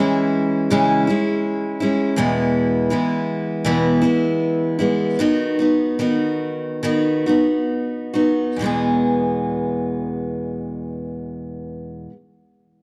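Folk excerpt with a hopeful, pastoral mood, carried by a single picked steel-string acoustic guitar that sits up front with an auditorium-like warmth, ranging from its low bass strings to the upper middle of the neck. The guitar moves from C#m through E and B/D#, slowing between 2.2 and 8.6 seconds before settling back on E at 8.6 seconds. The sound is dry and close in the manner of a 1970s studio, with light reverb and a small-room ambience around the guitar.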